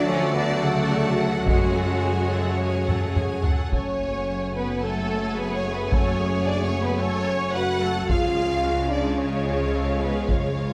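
A straight 4/4 pulse at 109 BPM drives this dark, dramatic slice of epic orchestral film score in F# harmonic minor, with a heavy-stick taiko ensemble arriving up front at 1.5 seconds and a drum fill from 2.9 to 3.7 seconds leading into the second section. Two violin sections carry the melody and a second line in the background, one close and the other more distant and lush, while a viola section adds accompaniment with soft attacks and expressive portamento. French horns sit present with light vibrato, joined by a full string section with a focused, smooth top and a tight, vintage-toned trombone section, all holding sustained chords. Beneath them, a clear cello section and a distant, lush double bass section anchor the bass. The harmony moves from D to F#madd9 and settles on C# at 8.1 seconds, all set in a moderate scoring-stage reverb.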